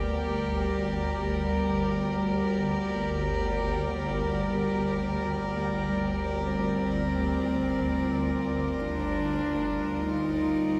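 A husky horsehead fiddle enters at 6.4 s, a single close, intimate voice bowed on horsehair strings, its airy tone colored by light vibrato, gentle portamento and a trailing delay as it carries a short melody in the middle register. Beneath it, this ominous, cavernous dark ambient drone floats in free time on a G minor chord, a fragment cut from a longer piece. A rich symphonic cello section holds sustained chords up front from the opening, bowed sul tasto with soft attacks for a pure, floating ensemble sound. Underneath sits a swarming, detuned low drone, granular and tense, built from sine tones with slow attacks and long release, thickened by its own reverb and a subtle chorus. The whole mix is soaked in a wet plate reverb, giving it a dreamy, cavernous depth.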